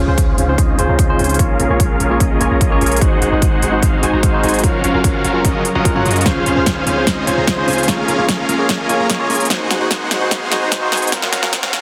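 A huge, detuned supersaw riff under a sweeping low-pass filter drives this lush, playful future bass build-up at 148 BPM in half-time, alongside a barky tine electric piano with overdrive and tape echo, a deep boomy 808-style bass, an airy, breathy pad, a very quiet riser, a punchy overdriven electronic kick and a big-room kit of crisp hats and a soft-clipped snare that launches a drum fill at 6.3 seconds, all moving through Dbmaj7, Bbm7, Ab7 and Gbmaj7 in Db major with pumping sidechain on the synths and bass in a dense, heavily limited mix.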